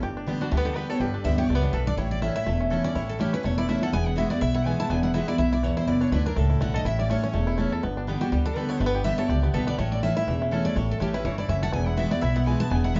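A lively, rustic bluegrass excerpt opens with a bright, jumbo picked acoustic guitar accompaniment with audible finger squeak, twangy, percussive fingerpicked banjo arpeggios and a woody, thumpy pizzicato upright bass up front, then at 0.4 seconds a second full-bodied picked acoustic guitar steps forward with the melody beside a biting, intense fiddle with light vibrato in the background, the swung groove sitting in a wet studio reverb heard from further back in the room with the highs rolled off.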